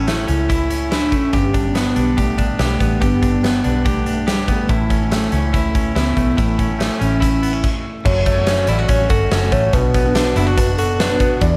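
A straight four-beat pulse from a big, up-front rock drum kit, with a fat snare, punchy kick, hi-hat and crash ringing in a bright stone room, carries this youthful, bright slice of jangly indie pop, cut from a longer piece. Beneath it, a vintage fingered electric bass plays a dark, round, foam-muted line through an amp. A direct-recorded clean electric guitar spins twangy, scooped, compressed arpeggios, and from 1.3 seconds a full-bodied, fingerpicked jumbo steel-string acoustic guitar adds warm accompaniment in the background. Over the top, a nostalgic lead with a detuned triangle-and-sawtooth tone sings the melody, sustained and warbling with vibrato and chorus, pairing a fast attack with a dusky edge. The band stops briefly at 7.6 seconds before a new section begins at 8.1 seconds, moving from A and G into F#m and Bm, all wrapped in light reverb, small-room ambience and a haze of vinyl crackle.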